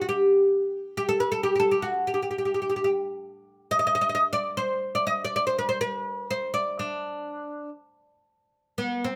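A solo oud, fretless and plucked with a plectrum, sits up front with a woody, deep voice from its doubled strings, spinning out a festive Turkish line in D makam hicaz. The piece moves in a straight 7/8 at 241 BPM counted in eighths, and the oud ranges from just under B3 up to Eb5. A moderate studio reverb gives the room a natural glow in this short excerpt cut from a longer piece.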